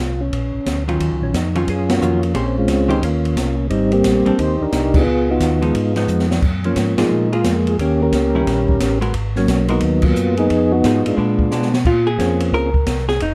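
Soul jazz organ trio in Eb minor, a bluesy, smoky excerpt swinging at 177 BPM in 4/4. An up-front, percussive tonewheel organ carries the melody with key click and third harmonic percussion, its round tone colored by chorus vibrato and a slow rotary speaker. A second, mellow tonewheel organ plays the bass line through the same chorus vibrato and slow rotary, while an acoustic jazz kit enters at 0.3 seconds with dark cymbals, a high-tuned snare and a boomy kick. A clean, compressed hollow-body archtop guitar, picked and miked from its amplifier, joins at 0.9 seconds to comp through rich extended harmony, from Ebm9 and Abmaj9#11 to Eb7b9 and Bb7b9. The band hits shared accents along the way, the drums play short fills, and at 11.9 seconds the guitar steps forward for a brief solo, with the melody organ dropping out shortly after. The production is dark and lightly reverberant, with a natural studio-room feel.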